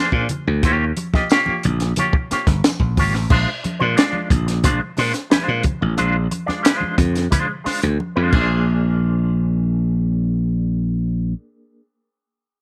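A growly, punchy slap bass drives this gritty, funky 90 BPM excerpt in Bb mixolydian, alongside a twangy, clean electric guitar with an envelope filter and tremolo and a dry compact cocktail drum kit with a high-tuned snare and dark cymbals that plays a fill at 8.0 seconds, all up front, while ringing, hard-handed congas and a jingly vintage tambourine, heard only from 1.3 to 2.8 seconds, sit in the background of a small room.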